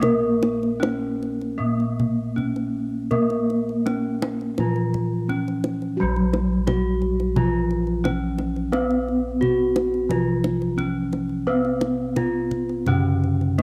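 A straight 4/4 pulse and a tight, dry kendang carry this hypnotic Javanese gamelan fragment in pelog tuning: an up-front bronze metallophone rings out the melody under horn mallets in a boxy small room, while a second metallophone struck with wooden mallets shimmers with the beating of its paired tuning, and mellow bossed gongs, round and soft under padded beaters, anchor the bass, as the home cassette recording moves from its opening section into a second at 6.0 s under light reverb.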